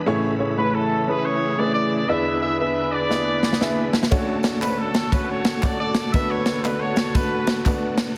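Jubilant and reverent, this uptempo gospel excerpt swings with a buoyant eighth-note lilt, cut from a longer piece. A tight, vintage horn section carries the melody with a clear tone and light vibrato, sitting up front beside a woody, intimate upright piano whose action noise can be heard as it accompanies. Beneath them, a bright, shouting tonewheel organ holds full, clean sustained chords through a slow rotary speaker and chorus vibrato. The big-band drum kit arrives with a fill at 3.1 seconds, bringing a punchy kick, medium-tuned snare and ride cymbal with an airy, polished hall sound, and tambourine and group handclaps join quietly in the background at 4.1 seconds. The harmony moves from Amaj7 to E7, Dmaj7 and Bm7/D, all set in a moderate scoring-stage reverb and pressed into a heavily compressed, radio-like sound.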